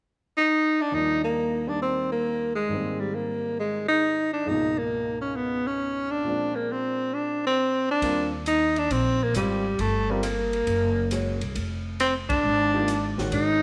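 A relaxed, swinging small-group jazz excerpt opens with an up-front tenor saxophone carrying the melody with vibrato, scooped notes and a smooth top, soon joined by warm baby grand piano accompaniment. At 8.0 seconds a woody, growly pizzicato upright bass and an open drum kit with dark cymbals, a high-tuned snare and a boomy kick come in beneath the saxophone solo. The band hits an accent at 12.2 seconds, all within a moderate echo-chamber reverb.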